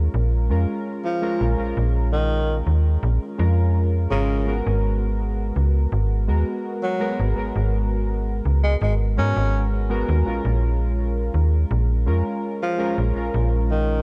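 A breathy tenor saxophone carries the melody from 1.0 s, its whispered, intimate tone shaped by vibrato, scooped notes and a soft attack, with tape echo trailing its jazz-style phrases. This short vaporwave passage, cut from a longer piece, moves at an unhurried 83 BPM in a straight 4/4, and its mood is woozy and melancholic. Alongside the horn, warbly lo-fi synth keys supply nostalgic accompaniment, their detuned pulse and sawtooth tones tinged with ring modulation, subtle chorus and tape echo. A slap-like FM bass sits up front with a snappy, metallic attack and a digital, decaying tail. The harmony drifts from A#m7 to G#m9 at 4.5 s and back to A#m7 at 10.3 s, all heard through a cassette-tape studio ambience.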